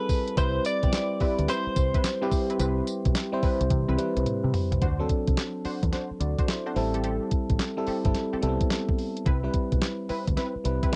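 Punchy and bouncy, this short cut of new jack swing R&B rides a swung sixteenth-note feel in 4/4, with a hazy cassette-tape sheen and a dry, close sound. A glassy, bell-like FM electric piano with chorus sits up front from the start, its warbling vintage tone carrying the harmony from Cmaj7 through D7 and Am7 and back to Cmaj7. A clean, picked electric guitar, recorded direct and compressed, plays a brief melody that stops at 4.2 seconds, partway through a drum fill that begins at 3.7 seconds and leads into the second section at 4.8 seconds. The sampler-style 12-bit drum machine is forward in the mix, with a thumpy kick, fat snare, hi-hat, handclaps, tambourine and toms, while a dark, round, foam-muted fingered bass holds down the low end. Tucked lower in the mix, a funky polysynth comp of detuned sawtooth and pulse waves adds chorused, filter-plucked stabs.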